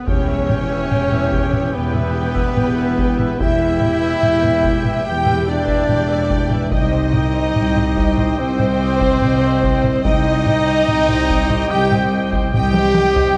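Heroic and dramatic, this epic orchestral film-score excerpt at 72 BPM in 4/4 sets a lush, vibrato-rich violin melody over a second violin line and airy flute, distant French horn chords, clear trumpet stabs, gliding violas, woodwind chords, rich cello and woody double bass, driven by saturated, heavy-stick taiko drums, opening with a huge, dark sub-drop impact, moving from E minor to C minor at 6.7 seconds and closing on a drum fill at 12.5 seconds, all in a moderate scoring-stage reverb.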